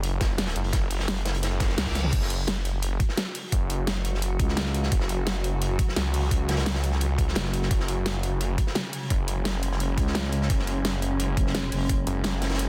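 Aggressive and futuristic, this dark technical drum and bass excerpt runs at 172 BPM in a straight 4/4 around an F#5 chord, driven by a snarling, detuned saw bass with distortion and sidechain pumping, joined in short bursts by a thick, growling FM bass from 4.4 seconds and a swarming, granular drone that enters at 3.3 seconds with its own reverb. Two layered kits drive the groove: an up-front electronic kit with a huge snare, bright hats, crash and toms, and a gritty, saturated breakbeat kit with a rolled-off top, all anchored by a knocking, tape-warm electronic kick. A background reverse cymbal at 1.6 seconds leads into a drum fill at 2.0 seconds, and the dense, heavily limited master keeps the sound dry and close.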